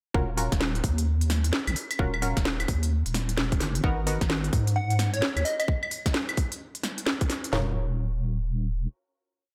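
Skippy and late-night, this short two-step UK garage piece moves at 130 BPM in 4/4 with a swung sixteenth feel, set in Eb minor over Ebm9 and Abm9 harmony before a final Ebm9 chord at 7.5 seconds. A deep, soft wobble bass with triangle and sine tones sits up front, saturated and compressed with chorus and sidechain pumping, carrying a skipping syncopated line from 0.1 to 8.9 seconds. Two layered electronic drum kits drive the groove: one supplies a tight two-step kick, floor toms and a cracking snare, while the other, up front, adds crisp swung hi-hats, claves and rims, both tape-toned and re-recorded in a large room. Sparse, punchy sawtooth chord stabs with rootless voicings, a filter pluck, chorus, cassette character and echoing delay appear early and return for the closing chord. Around 4.8 seconds a catchy, mellow square-wave lead in detuned unison, with a noise layer, filter sweep, moving notch, vibrato and delay, offers short phrases, all within a digital ambience.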